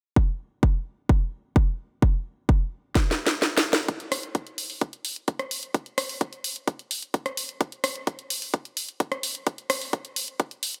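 A punchy, layered electronic kick drum opens this anthemic, emotional festival progressive house excerpt at 129 BPM in a straight 4/4, sitting up front with a high-pass filter and a small-room character, before a house drum kit of hi-hat, rim click and cracking snare enters at 3.0 seconds with a fill, the kick dropping out briefly at 3.4 seconds, and the two parts drive a build-up from 3.9 seconds under light reverb.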